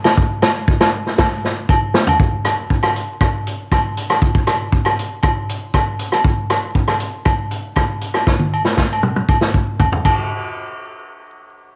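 A dry, homemade cassette sound with vinyl crackle frames this short cut from a longer highlife piece, a danceable, carefree groove in 4/4 at 118 BPM with a straight feel. A vintage acoustic drum kit sits up front, mid-forward and dark in its cymbals, with a punchy kick, a medium-tuned snare, rim clicks, hi-hat, toms and crash, its rolled-off top softened further by cassette tape colouring. Agogo bells ring out beside it, sitting lower in the mix and carrying the airy sound of a live room. The drums push through a fill at 1.7 seconds that leads into the main stretch of the groove, then a longer fill from 8.3 seconds carries the kit to its finish. The bells carry on a touch past the drums to 10.4 seconds before the piece moves into a brief closing passage.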